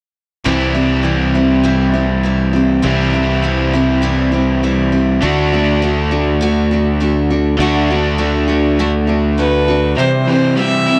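Heard through worn, warbling cassette tape with a pitch drift and a moderate studio reverb, this short cut from a longer rock piece moves at 101 BPM with a nostalgic, hopeful mood, shifting from C to D and back to C. A woody, full-bodied picked acoustic guitar with dark old strings and plate reverb picks out the accompaniment, while a bright, double-tracked overdriven electric guitar plays a compressed riff and a direct fingered electric bass holds the low end until 9.9 s. At 9.4 s a close, nasal, reedy bowed fiddle with a gut-string tone and plate reverb enters with the melody.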